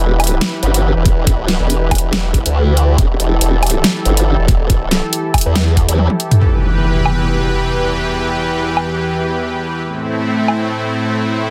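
Dense, heavily limited and lightly reverberant, this heavy, aggressive half-time wobble dubstep excerpt opens on a drop where a detuned, chorused and overdriven formant-sweep wobble bass snarls beneath a lush supersaw pad pumping through its sidechain, while a layered, tape-warm drum kit with a huge snare and bright hats is soon joined by a knocking electronic kick, until a drum fill leads into an electronic impact at 6.4 seconds, after which the kit carries on until shortly before the close and the pad sustains to the end.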